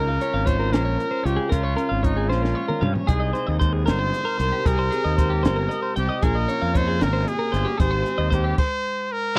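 A bright, smooth-topped trumpet with pop-style vibrato carries the solo melody up front in this brief math rock and midwest emo passage, cut from a longer piece in Ab major at 76 BPM in a straight 6/8. Beneath it, a clean, compressed twelve-string electric guitar picks arpeggios in a high register, while a second electric guitar through a small old amp supplies slightly broken-up, lo-fi accompaniment. A growly fuzz bass, fingered and overdriven, sits prominently in the low end, and a compact cocktail drum kit with a dark, smooth tone, a high-tuned snare and a punchy kick adds a fill at 2.3 seconds. The harmony moves through Db6, Abmaj9, Bbm7 and Abmaj7 beneath the bright, intricate mood. The bass and drums drop out for a stop at 8.6 seconds, leaving the trumpet and guitars to close the passage. The sound is dry and close, like a 1970s studio recording with little reverb.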